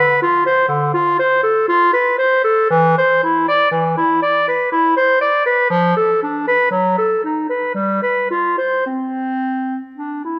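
In a free, rubato triple metre, this short fragment from a longer piece unfolds as a baroque-style fantasia for unaccompanied clarinet. The mood is solemn and flowing, with the clarinet carrying the music alone from 0.0 to 10.4 seconds. Its tone is clear and classical in style, reaching from D3 up to D5. Although the instrument sits up front in the mix, a moderate recital hall reverb lends it a distant, roomy quality. The result is a spacious concert sound that suits the music's grave, unhurried character.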